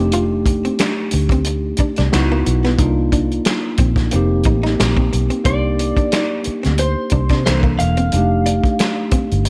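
Soulful and sensual, this short R&B and neo-soul passage moves at 90 BPM with a gentle swing on the sixteenths, as a saturated, gritty soul drum kit with a tight kick, finger snaps and hi-hat and a dark, foam-muted fingered bass sit up front beneath a worn, slightly out-of-tune tine electric piano moving through chords such as F13, Dbm11 and Cm11. A clean, hollow-body archtop guitar adds a picked second line, while light reverb gives the whole a small-studio ambience. At 5.5 seconds a slightly broken-up, compressed lead guitar through a small old amp enters with the melody, colored by analog chorus and slapback echo, over Cm9 and C13 harmony that returns to F13.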